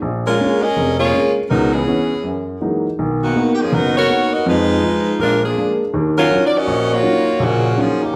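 A wet large-studio reverb surrounds this short cut from a longer jazz piece, with the band playing live together in one room. The tempo is 162 BPM in 4/4 with a swung eighth-note feel, and the key is E-flat minor, giving the music a brassy, sultry mood. An upright piano opens at 0.0 s as accompaniment, its tone woody, intimate and polished, with long sustain and audible action noise sitting up front. A close-miked saxophone section enters at 0.3 s carrying the melody, sounding tight and up front in the mix, a touch louder than the piano. The harmony moves through rich jazz chords such as Bbm7, Gb13, Bmaj7 and Fm7b5 before settling on Ebm9 as both parts play through to 8.2 s.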